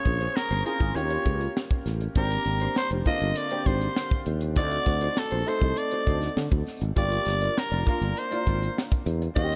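A raspy soprano saxophone carries the melody from the opening moment of this polished, urban 1980s jazz-funk pop excerpt, gritty and edgy with vibrato, over a boxy grand piano softened by a lush chorus. A moment later, a tight funk drum kit with a high-tuned snare and an up-front, growly fretless bass join in, while a very quiet, clean, fingered electric guitar riff sits beneath. Jazzy extended chords colour the harmony, and the dark, glossy production wraps the band in light reverb and small room ambience.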